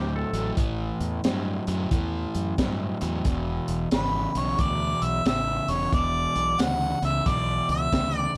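Electric blues shuffle with a soulful, laid-back swing: a twangy clean lap steel briefly sounds through the first 0.5 seconds while an overdriven semi-hollow guitar picks a hollow-bodied, up-front riff over a round, punchy fingered bass. A dark, gritty breakbeat kit with a high-tuned snare and rolled-off top comes in at 0.3 seconds. From 3.9 seconds a warm, roomy harmonica takes the melody with light vibrato and scooped notes, all in a cut from a longer piece with light reverb.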